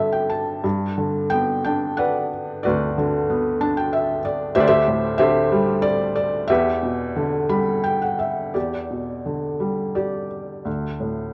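A felt-muted upright piano sits up front, soft and intimate, its thin felt giving short, mellow notes with audible action noise, as it plays a cool, brooding classical solo in 3/4 with rubato. Moving through Em7/G, Gmaj7, D7sus4 and Em7 before settling on a rootless Bm7/D near 10.7 seconds, the piano adds small fills, the first at the very opening, across this short cut from a longer piece. A moderate plate reverb and the warbling pitch drift of worn cassette tape color the sound with a worn, wavering haze.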